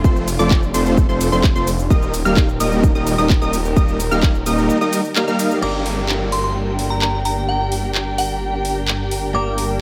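A straight groove opens this euphoric, emotional festival progressive house excerpt mid-drop, with a punchy up-front electronic kick that stops at 4.3 seconds and a house kit of cabasa, crash, handclaps and metallic hats. Sidechain pumping runs through the woody bowed strings, the thick chorused detuned saw bass, the lush unison pluck arpeggios, and the huge, airy supersaw riff with its vintage 12-bit grit and digital delay, over an F to Eb change. At 5.6 seconds the harmony shifts to G minor as the lead and pluck drop out, and a glassy FM bell melody with tremolo and a twangy, clean phased electric guitar enter. Moments later a downlifter sits in the background under light digital ambience.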